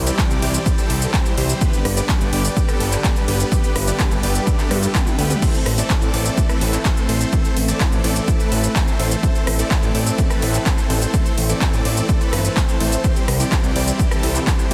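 A straight 4/4 pulse at 126 BPM anchors this euphoric, anthemic festival progressive house excerpt in A minor, where a punchy, overdriven electronic kick sits up front beneath a big-room dance kit of crisp hats, handclaps, cabasa, rim clicks, toms, ride and crash with a drum fill at 4.7 seconds, while a fat, nasal analog bass, huge detuned supersaw chords with digital delay, and an airy background pad treated with chorus and phaser all pump to the sidechain through a C, G, A minor progression in a dense, heavily limited mix with light digital ambience.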